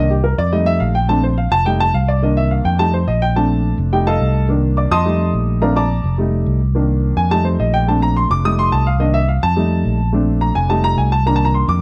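A dark, lightly reverberant production frames this festive, joyful salsa excerpt at 212 BPM, where a worn, deep-bodied concert grand piano takes a solo across the full 11.8 seconds over a round, amped fingered electric bass, both up front, cycling through Cm7, F7 and Bbmaj7.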